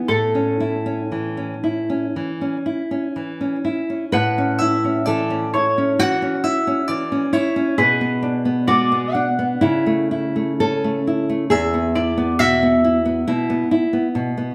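This romantic duo pairs mandolin and classical guitar in a tender, serene fragment taken from a longer piece, moving at an unhurried pace with a flexible rubato feel. The mandolin carries the melody throughout, its picked double strings giving a round, warm tone in a compact upper range. Beneath it, the nylon-string guitar fingerpicks a classical accompaniment that spans from deep bass notes into the middle register, sitting up front and slightly louder than the melody. A brief opening phrase gives way at 4.1 seconds to a longer restatement, where the harmony drifts from A through G#dim/B and A/C# before settling on E. The two players sound as though they are performing together in one room, bathed in a generous, wet studio reverb that lends the whole duo a spacious, glowing halo.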